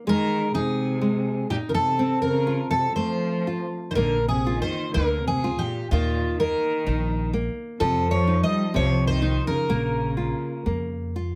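Longing and mournful, this short fado-style ballad, cut from a longer piece, unfolds in a slow, rubato 2/4 with light reverb around it. A fingerpicked twelve-string acoustic guitar carries the melody up front, its full-bodied, shimmering tone octave-doubled across the upper register. Beneath it, a bright nylon-string guitar plays classical fingerpicked accompaniment from the very start, while a single bowed cello traces a distant second line with expressive vibrato and portamento. At 4.0 seconds an upright bass enters up front, its pizzicato gut strings sounding woody and thumpy. The harmony drifts from Ab through F and Bb toward a closing Bb minor, leaving the phrase hanging in sorrow.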